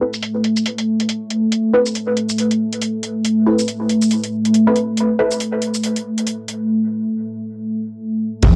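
Heavy and brooding, this deep dubstep excerpt moves at 139 BPM in A minor with a swung, half-time feel. It opens on a dark, full-bodied sawtooth pad that carries a filter sweep, chorus and built-in reverb, alongside muted, detuned chord stabs treated with phaser and dub echo until 5.3 seconds, while a deep house kit with metallic, low-passed hats, shaker and crash sits further back under cassette-tape grit. At 8.4 seconds a very quiet layered kick, an up-front electronic impact and a wobbling, compressed sine-and-triangle bass with chorus arrive together as the clip ends.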